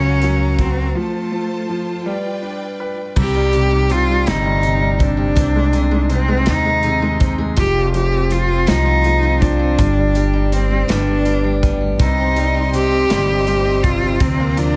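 Aching and melancholic, this slow six-eight pop ballad excerpt at 54 BPM moves from a brief opening with a break at 1.0 seconds into C minor at 3.2 seconds. Throughout, an up-front bowed cello carries the melody with vibrato, portamento and tape echo over clear concert grand piano, a woody pizzicato upright bass and an airy country drum kit with punchy kick. A picked steel-string acoustic guitar joins in the background at 3.2 seconds, while a lush, bright string section holds chords at the start and returns at 12.0 seconds.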